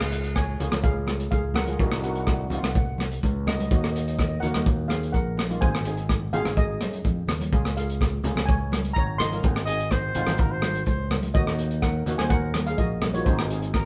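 A shimmering lead steel pan carries the melody in this festive, carefree calypso excerpt, its soft rubber sticks giving a mellow, mid-forward tone. A second pan, played as double seconds with medium rubber sticks, supplies accompaniment in the background. The groove sits at 126 BPM in a straight 4/4 in Db major, moving through Db, Cdim, Ebm and Ab. Up front, a crunchy breakbeat drum kit sounds dark and smooth, with a punchy kick, rim click, hi-hat and a rolled-off top, while a fingered electric bass adds a bright, growly, amped low end, and ringing, medium-tuned congas played with soft hands sit back in the mix from 0.6 seconds. At 9.7 seconds a breathy trumpet enters with a jazz-style second line, distant and roomy, with scooped notes and light vibrato, and the band sounds as if playing live together in one room with moderate studio reverb.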